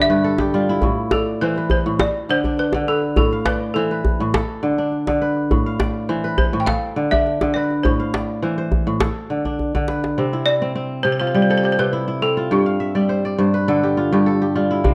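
Warm and flowing, this excerpt of West African string and xylophone music moves at 103 BPM in a straight 4/4, centered on C major with the harmony circling between Am and D5 before settling on C. A ringing, crisp kora is fingerpicked in arpeggios up front, adding fills at the opening and again from 12.5 seconds, while a woody, buzzing balafon struck with hard rubber mallets carries the melody. A tight, cracking djembe sits close and dry from 0.4 to 10.2 seconds, closing its run with a fill, all set in a dark production with light reverb.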